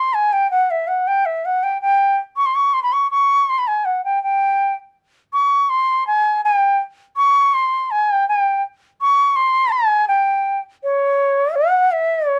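A dark production with light reverb frames this brief cut from a longer Indian classical piece, serene and devotional at 163 BPM in a straight 4/4, tuned to A4 = 441 Hz. A lone bamboo bansuri sits up front, airy and reedy with vibrato and a soft attack, ranging from Db5 to Db6 across its 12.4 seconds, and the music turns to a new section at 10.1 seconds.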